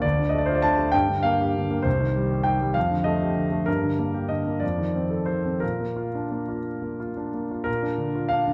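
In a rubato 6/8, this brief romantic character piece for solo concert grand piano, cut from a longer work, unfolds with a passionate yet hopeful mood, the up-front piano sounding clear and natural with deep bass and long sustain as it moves from D minor through G minor and a rich F13 to settle on Bb by 5.6 seconds, all set in a moderate recital hall reverb with a dark, warm production.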